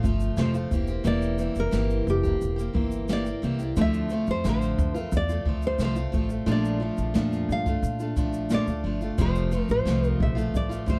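This easy-going, heartfelt acoustic pop excerpt opens with all four parts together: a full-bodied, fingerpicked classical nylon-string guitar carrying the melody between F4 and F5, touched with tape echo, over an up-front picked parlour steel-string guitar. Beneath them, a pizzicato upright bass with a woody, dark tone anchors the low end, while a jazz kit played with brushes sits distant and roomy in a small room, its boomy kick, medium-tuned snare and shaker softened by a rolled-off top. The tempo is a relaxed 89 BPM in a straight 4/4, in F major. The harmony moves from F through C7/E and Dm7 to Bbmaj7 at 6.5 seconds before settling back on F at 9.2 seconds. A light reverb gives the 11-second passage a gentle, intimate glow, and the passage is a fragment cut from a longer piece.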